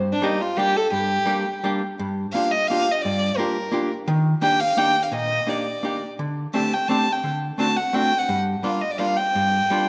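Heard through a moderate concert-hall reverb, this bittersweet, nostalgic musette fragment in G minor moves at 172 BPM in a rubato 3/4, with a single up-front violin carrying the melody in an intimate, airy sul tasto tone with light vibrato and a soft attack over a dark, clean, picked hollow-body archtop guitar accompaniment, while the harmony passes from Gm through Ebmaj7 and D7sus4 to D7 before settling on Gm7 at 8.3 seconds.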